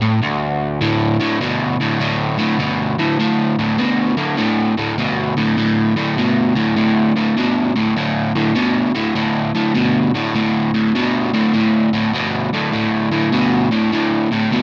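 Raunchy and swaggering, this rock excerpt at 101 BPM in a swung 4/4 features a lone crunchy, warm overdriven electric guitar, picked and double-tracked up front with analog delay, working a low D2 to B2 range around a D5 chord from the start to 14.6 seconds in a small room with a dulled top end.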